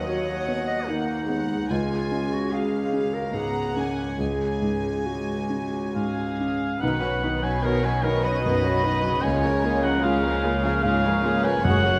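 Cinematic and tender with an uplifting glow, this excerpt moves at 74 BPM in a rubato 3/4, centered on F# major. A dark grand piano with audible action noise and a short, vintage sustain carries the accompaniment alongside a woody, lush viola section sitting in the background, while a soft-attack violin section plays sul tasto as a floating second line and the distant cello section holds the bass. A clear solo clarinet adds a second line until 6.4 s. Around 6.0 s the violins take up the melody and a mellow cor anglais with light vibrato comes up front, joined at 6.8 s by a dark double bass section with a smooth top. Harmony drifts through added-ninth and suspended colors before settling on a C#6 chord, and a close, dry timpani note on F#2 enters in the background at 11.6 s. Moderate scoring-stage reverb gives the ensemble a roomy, gentle sheen.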